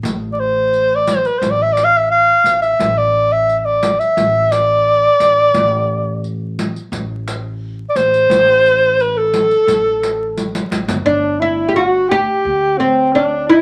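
Melancholic and longing, this short excerpt from a Turkish makam ensemble piece in A makam ussak moves at 87 BPM in a straight 4/4, led by a mellow alto saxophone with classical-style vibrato, placed up front as the solo voice over pizzicato upright bass, with its woody steel-string tone, and a compressed, saturated riq with bright jingles played with soft hands. The riq plays a fill from 10.4 to 11.1 s and then stops, and at 11.1 s a plectrum-plucked fretless oud with double strings and an up-front, acoustic tone enters as a second line. The recording sits in a moderate club reverb with vinyl crackle.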